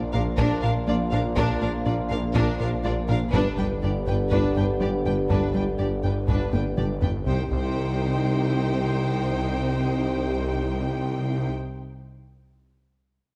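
A mellow French horn and trombone section opens this excerpt of a vast, futuristic film score, holding sustained chords in the background while a rubbery, hollow square-wave bass bounces through a riff and a growling, distorted sawtooth bass snarls underneath. Moments later the strings arrive: a violin section with soft-attack vibrato carries the expressive melody, a darker, distant violin section adds a second line, and lush violas, close cellos and very quiet double basses fill in the accompaniment and low end alongside a solo tuba. Set at 122 BPM in a straight 4/4 and C minor, the hybrid orchestral and electronic arrangement moves from Bb to G before settling on C minor at 7.3 seconds, just after a drum fill. A taiko ensemble struck with hard sticks drives the first section with a close, dry sound, its last hit arriving at 8.2 seconds. A moderate recital hall reverb gives the orchestra a roomy sense of space.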